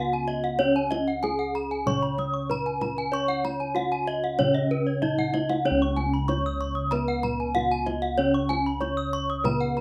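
A straight 4/4 pulse at 95 BPM drives this brilliant, ceremonial Balinese gamelan excerpt in Db slendro, where a close-miked, full bronze metallophone carries the melody over a background metallophone accompaniment and round, beating bossed gongs in the bass, while two horn-mallet metallophones with paired-tuning shimmer spin bright arpeggios, one airy and up front, and a tight, band-limited kendang played with soft hands enters at 0.4 seconds and adds a fill at 5.0 seconds, all in a rough home demo mix with moderate studio reverb.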